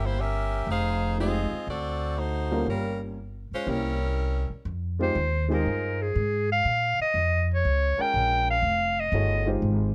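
Sultry and brassy, this swung jazz passage in F minor moves at 121 BPM, with a bright, tight saxophone section carrying the melody over a woody, dark pizzicato upright bass while a natural-sounding baby grand piano adds short-sustained accompaniment. The clarinet solo begins at 4.7 seconds, with the breathy clarinet entering at 5.0 seconds, its subtone and light vibrato up front. From 5.5 seconds a clear trombone section holds sustained chords beneath, and the whole is captured with close, detailed microphones and light reverb in a passage cut from a longer piece.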